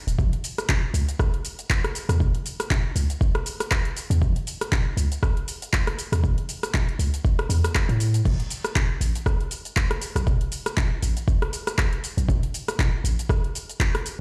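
Played through a big sound system in a bare stone room, this afro house passage carries a light digital ambience around its up-front, produced parts. At 119 BPM with swung sixteenths, the groove feels hypnotic and driving. A deep electronic kick anchors a layered deep house kit of crash, handclaps, metallic hi-hats, rim click, shaker and toms with a tape-warm character, while a boomy, mellow sine 808-style bass with a fast attack, tube saturation and sidechain pumping rolls underneath until 13.2 s.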